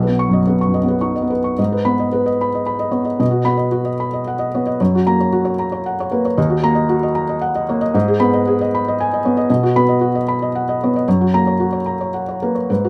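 Lightly reverberant and close, this melancholic, intimate fragment of neoclassical minimalist piano features a soft, mellow felt-muted upright piano playing solo up front across a span from B1 to C#6, moving in a rubato, unevenly pulsed 3/4 from a brief Badd9 opening into a cycling G#m–B–F#–D#m progression from 1.6 s until it is cut off at 12.9 s.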